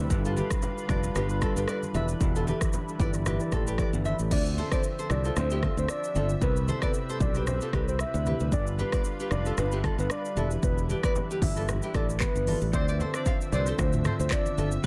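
A lightly swung 114 BPM afrobeats groove in 4/4 drives this smooth, mellow excerpt in D dorian, built on an electronic afro-pop kit with a deep kick, crisp hats, handclaps, shaker, rim clicks, toms and crash, a punchy, growly bright fingered electric bass up front, very quiet low-tuned congas, a fingerpicked nylon-string guitar riff with audible finger squeak and dub echo, a clean tine electric piano in the background that plays a short fill at 3.3 seconds, and a lush, airy, detuned unison pad holding the G7, Em7, Dm9 and Cmaj7 chords, before a round, warbling, vintage octave-layered synth lead takes the melody at 4.3 seconds and a distant, roomy horn section with light vibrato adds a second line from 12.7 seconds, all set in an echo-heavy mix with light reverb.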